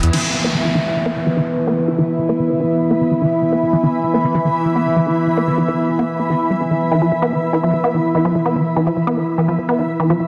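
Psychedelic and alien in mood, this trance excerpt at 146 BPM in a straight 4/4 feel opens onto a single E5 chord that holds for the whole passage. An overtone-sweeping drone sits up front on E3, its sawtooth and sine tones resonant and evolving with moving overtones, thickened by chorus and its own reverb. A granular cloud pad, also up front, spreads a blurred, detuned sine haze between B3 and B5, slow to bloom and mellow in character. From 0.1 s a lush, punchy unison pluck plays a riff between D3 and B3, its detuned sawtooth snapping in with a fast attack and short decay before trailing into dub echo. An electronic downlifter sweeps through the opening until 3.4 s, while a wet plate reverb and a dense, heavily limited modern master bind the parts together.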